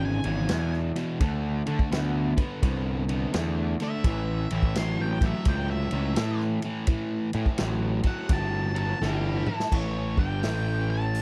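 A dark octave-fuzz lead guitar opens with a solo over a double-tracked distorted rhythm guitar riff and a growly, bright fuzz picked bass, joined at 0.2 seconds by a punchy, acoustic vintage drum kit with dark cymbals, driving this swaggering 85 BPM swung blues rock and southern rock groove in A mixolydian through E, D5 and A7 chords until a drum fill at 9.0 seconds leads to an A5 landing at 9.7 seconds, all captured in a dry, close 1970s-style studio sound.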